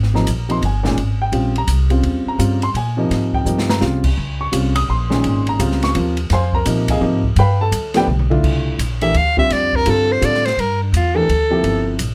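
Close, detailed microphones and a moderate studio ambience give this brief modal jazz piece, cut from a longer performance, an intimate, present sound. At 169 BPM in a swung 3/4, the music feels searching and open, moving from Ab major into C mixolydian at 8.4 s. An upright bass plays pizzicato with a woody, up-front tone, while an airy open jazz drum kit with dark cymbals, a medium-tuned snare and a boomy kick sits lower in the mix and adds short fills. The upright piano carries the accompaniment with a natural, short-sustained sound and audible action noise, moving through Abmaj9, Dbmaj9 and G7 before settling on C13sus4. At 9.0 s a breathy soprano saxophone enters for the melody, whispered and clear, with a soft attack, subtone, vibrato and scooped notes.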